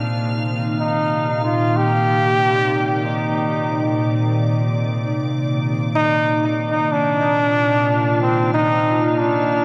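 A 93 BPM pulse in 4/4 carries a light swing on the sixteenths beneath this deep, meditative ambient excerpt in C minor, tuned to A4 = 436 Hz and resting on a single Cm9 chord. A soft, organ-like pad of pure, full-bodied tones holds sustained chords from the start, its slow attack and long release thickened by ensemble chorus and its own reverb. At 0.8 seconds a bright solo trombone enters with a vibrato-laden melody in classical style, trailed by dub echo, the whole set in a wet echo-chamber reverb.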